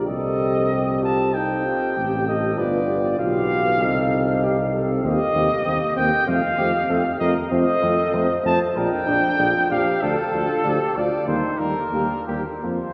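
Flexible rubato time in 4/4 at about 97 BPM carries this noble classical brass quintet passage, where a clear cornet with vibrato sings the melody up front. A punchy flugelhorn adds a second line in the background, while a warm French horn and a very quiet, vintage-toned trombone with light vibrato supply the accompaniment. A mellow tuba with light vibrato anchors the bass up front, and the ensemble is bathed in a cathedral reverb with a 6.8-second decay over harmony moving from Cm through F and Bb to Eb.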